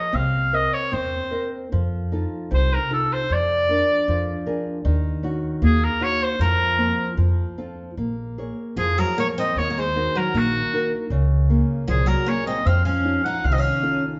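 An oboe sings the melody from the very start, up front and in a classical style with a light vibrato, yet with a distant, roomy quality, while a small-sounding fingerpicked nylon-string guitar accompanies it. This is a mournful, longing fado-style ballad in Bb minor at 77 BPM in 2/4, played with a rubato feel. An upright bass joins almost at once, its pizzicato notes woody and thumpy from steel strings. At 6.4 seconds a picked twelve-string acoustic guitar adds a second line, shimmering and octave-doubled, with a touch of finger squeak. The harmony moves through dark, restless chords such as C7#9, Ebm7 and a suspended Fsus4 resolving to F, before settling back toward Bbm7 and F7. The band sounds as though it is playing together in one room, bathed in a wet, large studio reverb with a soft, dull top end, and the passage is cut from a longer piece, ending at 14.2 seconds.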